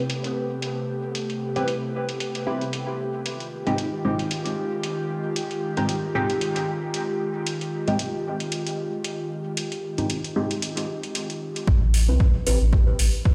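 Bathed in a huge stone-room reverb, as if played through a big sound system in a bare hall, this hypnotic, deep dub techno excerpt at 114 BPM lays an airy, breathy pad with 12-bit sampler grit and sidechain pumping under metallic, overdriven hi-hats and nasal, dark chord stabs trailing dub echo over Am9 and Fm9, until a round sub bass and a deep, up-front kick drum enter together at 11.7 seconds.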